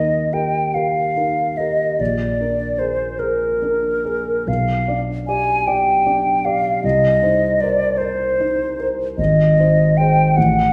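An airy, hollow concert flute with vibrato and a crisp attack carries the yearning, melancholic melody of this romantic classical duo, sitting up front over a dark, mellow grand piano whose deep bass supplies the accompaniment. The tempo is a slow 50 BPM in 6/8 with uneven, rubato beats, and the harmony moves from Eb through Bb7, G7/B and Cm7 before settling on Ab. A wet recital hall reverb frames this brief passage cut from a longer piece, lending the pair a sense of being heard from further back in the room.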